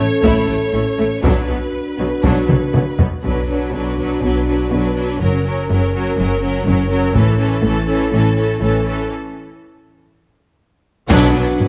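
A moderate scoring-stage reverb gives this cut from a longer cinematic orchestral score a heroic, dark sweep at 122 BPM in B minor, with lush violins carrying the melody over an expressive second violin line, intense violas, smooth cellos and distant double basses, while a mellow, close-miked French horn section holds chords. Band-limited, vintage-sounding taiko drums drive beneath with a fill around 2.5 seconds, then drop out before a break at 9.1 seconds. At 11.1 seconds the ensemble lands an accent, bringing in a clear trombone section, very quiet soft-attack strings and articulate hard-mallet timpani.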